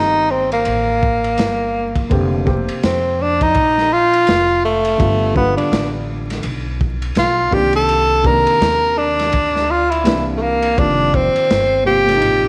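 A loose, swung sixteenth-note groove in 4/4 sets a mellow, smoky jazz-hop mood in this short cut from a longer hip hop piece. A breathy tenor saxophone sits up front and solos from the start until 10.8 s, its whispered tone carrying vibrato and a soft attack. Beneath it, a dark upright piano with audible action noise and short sustain comps through chords such as F7sus4, G7 and Cm9, while a thumpy, woody pizzicato upright bass holds the low end. A crunchy breakbeat kit enters at 0.5 s, gritty and saturated with a tight kick, a medium-tuned snare, dark cymbals and a rolled-off top. Vinyl crackle and a moderate echo-chamber reverb give the recording a smoky haze, and a brief new section begins at 10.8 s, returning to F7sus4.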